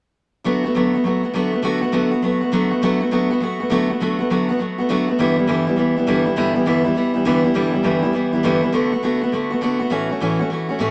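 A rollicking, rowdy rock piece in D major, this short excerpt cut from a longer work moves at a brisk 203 BPM in 4/4 with a swung eighth-note feel. A lone picked steel-string acoustic guitar carries everything from 0.4 to 10.9 seconds, its dreadnought body giving a warm tone that sits up front in the mix. The guitar ranges from G2 to F#4 and outlines a chord sequence of D6, G6, back to D6, and finally A6 just before the cut. The swing gives the fast tempo a loose, bouncing gait that suits the boisterous mood. A moderate studio reverb adds a touch of room around the instrument while keeping it close and present.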